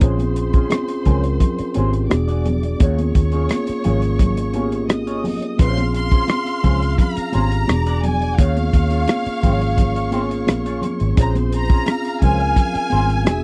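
A short excerpt of lush 1970s-style soul at 86 BPM opens with a muffled, tight-kicked drum kit up front playing hi-hat, kick and rim click, a round, foam-muted fingered bass, mellow tine electric piano chords, ringing high-tuned congas and a twangy, slightly broken-up wah guitar riff in the background, while a dark, softly bowed string section hovers above over a Bbm9, E9 and Eb9sus4 progression. At 5.6 seconds a smooth, even violin section enters with the vibrato-laden melody, lending a cinematic, silky sweep to the dry, close studio sound.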